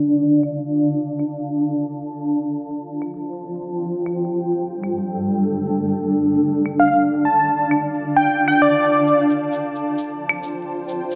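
A bright, punchy plucky unison lead with detuned sawtooth bite and dub echo carries a short, catchy melody from 6.8 to 9.2 seconds in this rainy, nocturnal future garage excerpt at 132 BPM in D minor, swung on the 16ths. Beneath it, a cloudy, blurred granular pad holds slow-attack sustained chords moving from Dm through Fadd9 and Gsus2 under a filter sweep, while an electronic, layered shaker and claves pattern ticks along from 0.2 seconds. A lush hall reverb, vinyl crackle and a low-pass filter give the whole piece a hazy, late-night glow.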